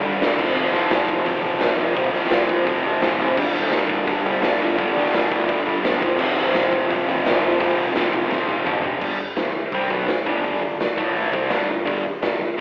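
A double-tracked fuzz guitar riff leads this raw, rowdy garage rock excerpt at 171 BPM in a straight 4/4, its bright, compressed tone carrying distortion and slapback echo over power chords that move between F5 and G5 before an A5. Up front beside it, a gritty, saturated acoustic drum kit with a punchy kick and medium-tuned snare pumps in a stone-room sound, with a fill at 8.3 seconds leading into a new section at 9.0 seconds, while an overdriven picked bass sits in the background. The whole excerpt comes across like a live club gig heard through the venue's PA, with plate reverb and a thin, telephone-like filter.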